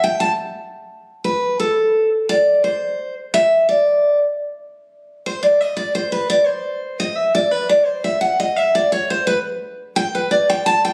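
This bluegrass fragment, cut from a longer piece, sets a haunting, lonesome mood in a straight four-beat metre. A single picked steel-string acoustic guitar carries the whole recording, playing solo from 0.9 to 10.9 seconds in a range that spans A4 to A5. The dreadnought guitar sounds bright and full-bodied, sitting up front, with audible finger squeak adding a close, human touch to the picking. A moderate large-studio reverb with a 1.3-second decay surrounds the instrument. Captured on a phone in the room, the sound also carries a club-like ambience that deepens the solitary feel.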